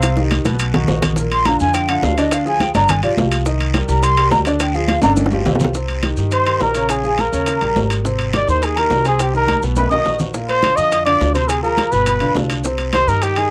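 A driving, straight 4/4 Afro-Cuban jazz groove at 209 BPM in C minor, cut from a longer piece, sets bright high-tuned congas, round low-tuned bongos and ringing, saturated metal-shell timbales alongside a quieter raspy guiro and grainy maracas, while a woody pizzicato upright bass sits up front and a smooth, vintage grand piano comps with long sustain; a breathy, hollow metal flute with vibrato takes a solo from 0.0 to 5.7 seconds, and at 6.3 seconds a mellow, cassette-tinged trumpet enters up front with a soft-attack, vibrato-laden jazz solo, all captured as a sultry home cassette recording with light reverb.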